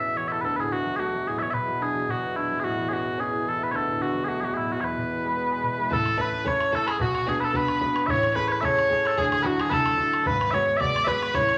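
This Celtic folk reel is lively and bright, a short passage cut from a longer piece, with a gently swung feel. Small bagpipes carry the tune up front throughout, their mellow, sweet tone sustained continuously with vibrato. Beneath them, a warm baby grand piano supplies a natural, short-sustained accompaniment. For the first 5.9 seconds a close-miked pedal harmonium adds a reedy, breathing drone. At that point the harmonium stops, and a single bowed fiddle joins up front with a smooth, even second line touched by light vibrato, while a boomy, band-limited bodhran with a vintage character enters alongside it. The music sits in a large, wet studio reverb, and the harmony moves from D, Bm and A in the first half toward richer colours such as Amaj7, Dadd9 and G#m7b5 in the second.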